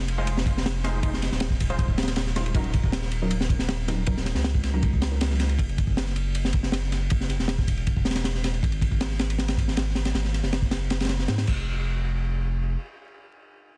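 A dense, heavily limited master with vinyl crackle and small-room ambience frames this atmospheric, frenetic drum and bass and jungle excerpt at 158 BPM, where a crunchy, gritty breakbeat kit with a high-tuned snare, tight kick and dark cymbals sits up front over a deep, thick, tube-saturated sub bass moving through Fm7, Ebm7, Esus2 and Gbsus2, while a bold, detuned, orchestra-hit-like sawtooth stab carries a filter sweep, reverb and dub echo until 5.4 seconds, and the bass rings on by itself after the drums stop at 11.6 seconds.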